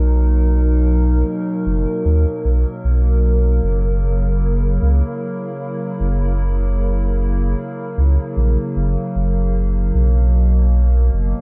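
Lightly reverberant, this peaceful, spacious ambient dub fragment, cut from a longer piece, moves at 76 BPM in 4/4 with swung sixteenths in F# mixolydian (tuned to A4 = 438 Hz), as a warbling, nostalgic, lo-fi, detuned tape-like pad with chorus and built-in reverb holds slow-blooming, mellow chords from Bmaj7 to F#7 and back to Bmaj7 at 9.9 seconds above a deep, round, up-front sine sub bass with a warm, fast attack.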